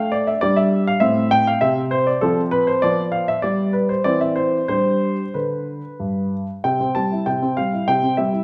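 A grand piano sits up front in a generous recital hall, its warm, present tone carrying a long sustain that the hall's reverb extends further. This brief passage, cut from a longer classical-period sonatina in C major, moves in an elegant, graceful 3/4 at roughly 91 to 101 BPM, shaped with a gentle rubato. The solo piano spans from G2 up to A5, with a high G5 ringing out at 0.4 seconds. The harmony travels through A minor, F and G7 over F before settling onto C over E and G. At 6.6 seconds a new section begins on a C chord, and the phrase closes at 8.4 seconds.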